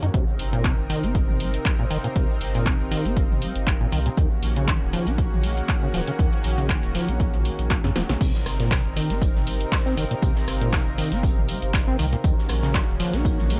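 A swung 4/4 groove at 119 BPM powers this gritty, driving acid house excerpt, built on a punchy electronic kick up front and an analog drum machine supplying crash, handclaps, hi-hat, rim click and snare. A grainy egg shaker sits in the background, and from 8.2 s, after a brief drum fill, a very quiet, dark acoustic rock kit adds hi-hat, snare and tambourine. A squelchy, resonant sawtooth acid bass riff with overdrive, tape echo and a filter sweep rides over a round, sidechain-pumped sine sub bass, while lush, detuned unison pad chords with chorus move between Cm7 and Ebm7 and a lo-fi, nostalgic tape-like pad with built-in reverb fades in softly behind them.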